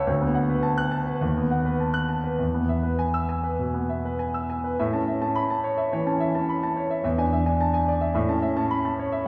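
A clear concert grand piano carries this brilliant, heroic classical piece alone, a virtuoso study cut from a longer work. Its deep bass and open tone span from C#2 to F#6, and the instrument sits up front while a wet recital hall reverb, heard from further back in the room, lends a lingering resonance. The playing moves in a flexible, rubato four-beat feel that suits the piece's showpiece character. The opening passage moves through Bm7/D and B7/D# before settling on E, and a second section begins at 4.8 seconds, turning on A, E7 and A again. The piano plays from the first moment until 9.3 seconds.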